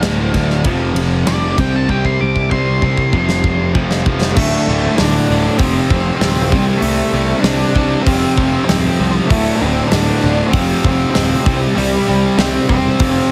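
A straight 4/4 pulse at 97 BPM drives this cathartic, brooding quiet-loud alternative rock excerpt, where an up-front big rock drum kit with a tight kick and rolled-off top plays a fill from 1.9 to 4.4 seconds, a punchy fuzz picked bass grinds underneath, bright overdriven semi-hollow and thick fuzz guitars play a riff in the background, a lo-fi electric guitar through a small old amp murmurs arpeggios until 4.3 seconds, and a dark octave-fuzz lead guitar with digital delay carries the melody from 1.3 seconds over D5, F5 and C5 chords, all squeezed into a heavily compressed radio sound with small room ambience.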